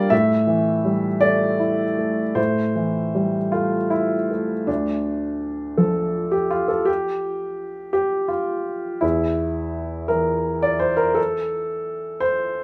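A woody upright piano sits up front with long sustain, playing alone in a wistful, melancholic neoclassical minimalist piece that moves at a slow, rubato pace in a gently swaying 6/8. The harmony shifts from Am7 to Dm as a new passage opens at 4.7 s, then the chords fall away from 9.0 s, all set in a moderate stone-room reverb. This fragment is cut from a longer piece.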